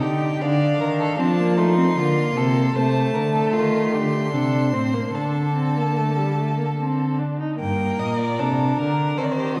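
A baroque-style fugue for string quartet in G minor opens at once with all four bowed players, each using vibrato, at a lively yet stately 76 BPM in 3/4. A clear, focused first violin carries the melody high above an expressive second violin that slides with portamento, while a distant viola fills in the accompaniment and a close, up-front cello anchors the bass. The harmony moves from D minor toward a new section at 7.6 seconds that lands on G minor, all set back in the wet bloom of a scoring-stage reverb.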